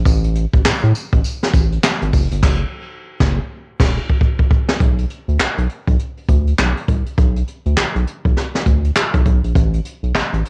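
R&B in a new jack swing style, this short clip from a longer piece moves at 101 BPM in 4/4 with a swung sixteenth-note feel, sitting in B minor and tuned slightly flat at A4 = 438 Hz, and its mood is slick and punchy. A round analog synth bass anchors the low end, deep and dark with a fast attack and sustained notes, its tone blending square, sine, triangle and sawtooth waves with a wave-folded edge, placed up front. A jazz brush drum kit drives the groove, playing kick, snare, hi-hat, crash cymbal, tambourine and handclaps with brushes; it has a boomy kick, a high-tuned snare and dark cymbals, and its mid-forward, rolled-off sound carries the grain of cassette tape. The band hits an accent starting at 2.4 seconds, a drum fill begins at 3.6 seconds, and the music moves into a new section at 4.8 seconds. The dry home-cassette recording keeps both parts intimate and immediate.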